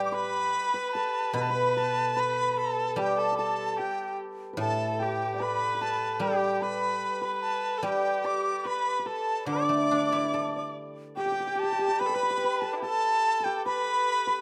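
This pastoral, graceful excerpt of Chinese traditional chamber music opens with all four instruments sounding together at an unhurried 73 BPM in 4/4, the pulse held loosely in a rubato feel. Up front, a mellow bamboo dizi carries the melody high in its range, its airy tone edged by the buzz of its membrane, with a soft attack and expressive vibrato. Beneath it, a clear, nasal erhu played by a single bowed player traces a second line with light vibrato and earthy portamento slides, joined by the shimmering, ringing strikes of a hammered dulcimer. A silvery guzheng, plucked with fingerpicks and also placed close to the ear, supplies the accompaniment across a span from A2 to A4 until it stops at 12.0 seconds, shortly after the music moves into a new section at 11.2 seconds. Close, detailed microphones capture each instrument's texture, set in a light reverb that keeps the ensemble intimate through to the cut at 14.4 seconds.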